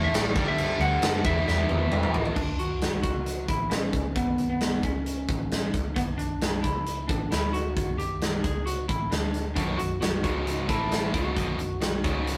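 This aggressive, menacing hard rock cut in B minor at 133 BPM opens with a twangy, slightly broken-up lead guitar melody over a round, dark hollow-body bass, a bright, tight distorted riff guitar and an overdriven stack guitar sitting in the background, as a big, up-front acoustic drum kit with a punchy kick joins and plays a fill into 2.4 seconds. There the two riff guitars drop out, leaving the compressed lead, bass and drums to carry the shifting suspended and power-chord changes until the riffing guitars return at 9.6 seconds. The rough rehearsal-room sound carries a light reverb and a natural, big-room drum ambience.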